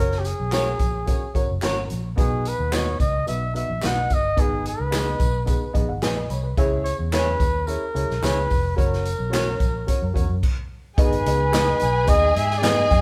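A clear, up-front flugelhorn carries the melody from the very start of this uptempo 1960s-style soul excerpt, backed by a woody, slightly detuned upright piano with audible action noise and a dark, round, foam-muted fingered electric bass. The swinging big-band drum kit comes in at 0.1 seconds with a punchy kick, a medium-tuned snare, hi-hat and crash cymbal, while tambourine, maracas and group handclaps sit in the background. An electric guitar through a small old amp adds slightly broken-up, lo-fi stabs bathed in spring reverb. Moving at 109 BPM in a straight 4/4 over chords from F# through B, G#m and C#m, the flugelhorn's scooped notes and light vibrato give the tune a danceable, uplifting lift. The upright piano slips in a fill around 5.5 seconds, the band hits a stop near 10.4 seconds, and at 11.0 seconds a lush, distant violin section enters with a bowed second line on G#m. The whole group plays live in one stone room with a moderate reverb that gives the mix a natural, close-knit feel.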